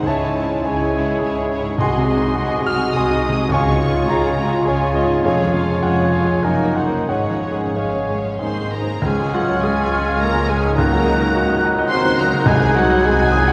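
An up-front, clear concert grand piano with audible action noise and deep bass carries the melody alongside a dark, lush violin section in this passionate, tragic romantic movement in rubato triple time, while a background violin section, hollow flute, distant oboe and very quiet clarinet weave second lines over a mellow bassoon, rich violas and soft French horn chords, with woody double basses and expressive cellos anchoring the bass, joined at 9.0 s by a barely audible trombone section and a very quiet tuba, all bathed in the long, wet reverb of a cathedral.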